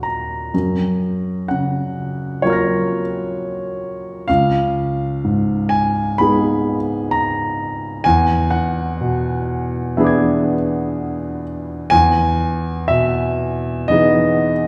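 A grand piano opens on a hazy E-flat minor add-nine chord, moving almost at once to G-flat major seven in a slow, rubato 4/4 at around 63 BPM. This is a short passage of impressionist classical solo piano, mysterious in mood, with the harmony drifting through D-flat nine at 4.3 seconds and E nine at 8.0 seconds before settling on E major seven at 11.9 seconds. The instrument spans a broad range from Db2 to Bb6 and is tuned to A4 = 439 Hz. Its tone is intimate and natural, with the mechanical action noise of the keys and hammers clearly audible. A wet recital hall reverb with a 1.7-second decay surrounds it, and the listener seems placed further back in the room, which adds to the veiled, dreamlike atmosphere.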